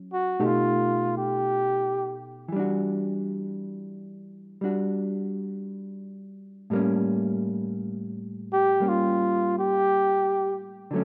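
A dark, clean hollow-body electric guitar opens this brief, romantic jazz ballad fragment with fingered swung chords moving from Baug7 to Em9 to A7b9, while an up-front, breathy flugelhorn solos in a mellow, vibrato-laden voice with scooped notes in two short phrases, at 0.1 and again at 8.5 seconds, all set in an intimate moderate plate reverb.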